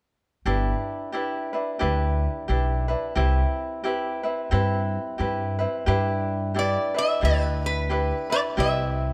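A lilting swing on the eighth notes carries this relaxed, dreamy Hawaiian excerpt at 89 BPM in 4/4, settled in G major and cut from a longer piece. Fingerpicked ukulele, light and bright, and pizzicato upright bass, woody and thumpy on steel strings, enter together at 0.5 seconds and hold the accompaniment and low end up front through to the close. The harmony moves gently between G6 and Cmaj7. At 6.6 seconds a lap resonator guitar takes the melody, its slide tone metallic and nasal under fingerpicks. Close, detailed microphones and light reverb keep every part intimate and clear.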